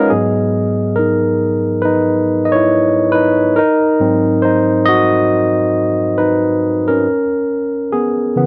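Sultry and late-night, this slow R&B fragment at 69 BPM in G# minor features a bright, barky tine electric piano playing alone through a combo amp, clean and up front in a dry, close 1970s-style studio sound, spanning G#2 to A#5 as it moves from G#m9 to G#7 at 3.6 seconds and C#7(no3) at 7.1 seconds over a swung sixteenth-note feel.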